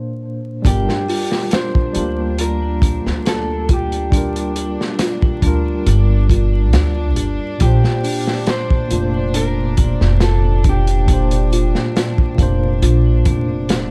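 Melancholic and cinematic, this trip hop excerpt moves at a slow 69 BPM in G minor, opening on a brief Bbadd9 break from the bright tine electric piano alone before settling onto Gm7 at 0.6 seconds and returning to Bbadd9 at 7.6 seconds. The electric piano, clean-toned through its built-in speakers, carries the accompaniment with tremolo and a vintage 12-bit sampler grit. A crunchy breakbeat kit sits up front with a tight kick, medium-tuned snare and hi-hat, its sound saturated and gritty with a rolled-off top, while a woody, thumpy pizzicato upright bass anchors the low end just as prominently. Above them, a rich bowed string section holds soft-attack sustained chords, and a dark, slightly broken-up electric guitar plays a fingered melody through dub echo until 11.9 seconds. A delicate, tinkling music box, slightly out of tune and tucked in the background, adds arpeggios with the same sampler grit and echo, and the whole mix is framed by a small room, a dark production and a layer of vinyl crackle.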